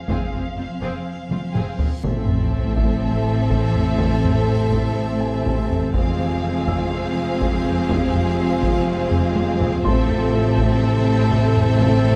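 Tense and relentless, this excerpt of a hybrid orchestral and electronic film score in A harmonic minor drives at 123 BPM in a straight 4/4, moving between F minor and A minor as heavy-stick taiko drums, compressed and saturated, pound beneath a lush, vibrato-rich studio violin melody, a second violin line, a distant viola part, focused cello and double bass lines, a cloudy, evolving granular pad with phaser, and a soft, felt-muted upright piano, until a huge, dark reverse cymbal and sub drop at 2.0 s ushers in very quiet, punchy trombones and mellow French horns holding chords, all washed in a wet recital-hall reverb.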